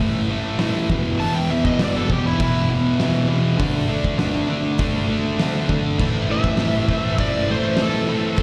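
A thick, double-tracked fuzz guitar riff with slapback echo sits up front in this raw, menacing garage rock excerpt at 100 BPM in A minor, driven by an oversized, low-tuned drum kit with a fat snare, punchy kick and dark cymbals, while an overdriven slide guitar melody with its own slapback echo cuts in at 1.2 seconds and again at 6.3 seconds, and a very quiet, buzzy combo organ adds sustained chords from 6.0 seconds, the performance heard as a live gig through the venue's PA with recital hall reverb.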